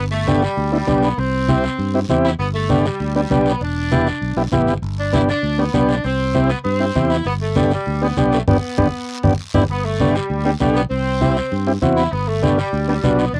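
A straight 4/4 cumbia pulse at 198 BPM drives this sunny, festive excerpt in G major, where a bright, softly attacked saxophone section carries the melody with light vibrato over a reedy, heavily vibratoed overdriven combo organ, a growly up-front fingered electric bass, thick-skinned low-tuned congas in the background and a raspy, dry guiro, all captured as a home cassette recording with moderate booth ambience, with a band accent from 8.5 to 9.7 seconds and a drum fill at 9.1 seconds leading into the repeated section.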